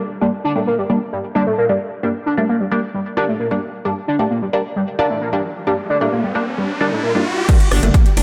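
Driving peak-time techno at 132 BPM in G minor, this short, relentless and industrial cut sits on a single G minor chord and is taken from a longer piece. An overdriven synth lead with a screaming, guitar-like edge plays a riff from the start, thickened by phaser, tube saturation, ensemble chorus, cassette tape colour, dub echo and sidechain pumping. Beside it, a filtered dub chord stab sounds muted and deep, its detuned tone carrying a filter sweep, phaser, subtle chorus, delay and pumping. A riser builds from 5.2 to 7.5 seconds, and at 7.5 seconds a punchy, up-front electronic kick arrives with a techno kit of crash, ride, rim click and metallic hats. A gritty, aggressive synth bass, saturated and pumping, enters at 7.7 seconds just before the cut ends, all set in a lush hall reverb.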